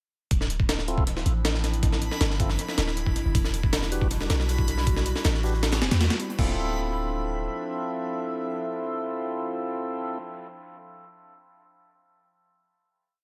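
A heavily chopped, gritty sampler breakbeat with a thumpy kick and high-tuned snare drives this dark, frenetic drum and bass and jungle piece from 0.3 seconds, shadowed by a very quiet acoustic rock kit looping in a bright stone room from 3.4 seconds, while a deep, boomy 808-style bass with tube saturation slides through gliding notes, a fat tonewheel organ on slow rotary speaker fires sparse, dub-echoed chord stabs with 12-bit grit, a reversed, granular texture holds a dreamy high note in the background, and a warbling, lo-fi tape-like pad with chorus and phaser sustains mellow chords through to 10.2 seconds in an echo-heavy digital ambience.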